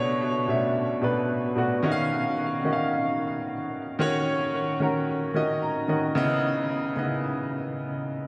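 Amapiano fragment with a hypnotic, soulful mood, where a solo grand piano, polished and up front with lush chorus and delay, moves through Bm9, Ebm9 and Dbm9 chords, adding a fill at 5.4 seconds, all set in a dreamy cathedral reverb.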